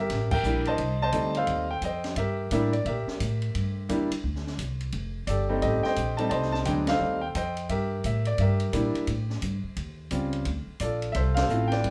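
A smooth, vintage-toned grand piano sits up front and carries the melody in this playful, swinging jazz piano trio passage, cut from a longer piece and moving at a brisk clip in 4/4. Close beside it, a woody pizzicato upright bass on steel strings holds down the low end, with both instruments sounding from the very start. The acoustic drum kit joins at 0.1 s, its dark cymbals, high-tuned snare and boomy kick set a step back in the mix. The harmony moves from a rootless C9 through F9 and back before turning to Gm69, A7alt and finally Dm7. The whole band hits accents together at 0.3, 6.8 and 11.3 seconds. The trio plays live in one studio room, with a natural, reverberant ambience that gives the session a cozy, warm glow.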